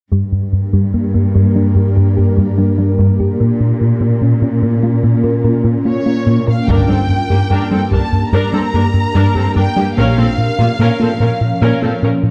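Tense and vast, this excerpt of a hybrid orchestral and electronic film score moves at a straight 73 BPM in G minor, alternating between G minor and B-flat minor chords. A rubbery, hollow square bass riff sits forward over a bowed cello section, while a tine-like synth pluck with chorus and digital delay plays background arpeggios and an ethereal pad with ensemble chorus sustains dark chords. The violin section enters at 5.9 s with an expressive, vibrato-rich melody, and at 6.7 s a focused, distant viola section, woody double basses and a hard-stick taiko ensemble join, all within a moderate scoring-stage reverb and a dark production.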